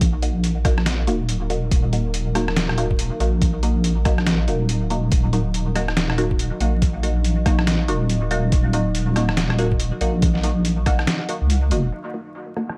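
Deep dubstep in Eb minor at 141 BPM, this heavy, meditative piece moves with a half-time feel and a 61% swing on the sixteenths, tuned to A4 = 435 Hz. Up front sits a soft wobble bass, sine- and triangle-based and detuned, thickened by chorus and tube saturation. An overdriven, knocking electronic kick anchors the groove until it drops out at 11.5 seconds. Alongside it, a gritty, pitched-down sampler-style kit adds low-pass-filtered hi-hats, rim clicks and a tape-warm, medium-tuned snare. A muted sawtooth chord stab with a moving notch and a filter pluck drifts through phaser, subtle chorus, cassette tape coloring and dub echo. In the background, a slow-attack ambient pad of detuned unison saws and a sub octave hangs in its own reverb, while vinyl crackle runs across the dry mix of this short cut from a longer piece.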